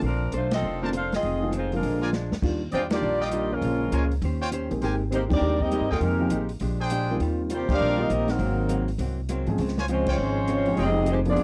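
A warm, vibrato-laden saxophone section carries the melody up front in this brassy, energetic big band swing excerpt, moving at a brisk 201 BPM in Eb major with a swing feel. Clear trumpet stabs with a light vibrato enter at 0.8 seconds, and a clear trombone section joins in the background at 1.7 seconds with a second line. Underneath, a woody, thumpy pizzicato upright bass sits prominently, while a big-band drum kit with dark cymbals, a medium-tuned snare and a punchy kick adds a drum fill at 2.1 seconds, and the whole band hits accents together at regular points. In the background, a concert grand piano with audible action noise and a clean, compressed hollow-body electric guitar fill out the harmony over rich chords such as Ebmaj9, Eb13 and Abmaj9. The sound is dry and close, in the manner of a 1970s studio session with small room ambience, and the passage is cut from a longer piece.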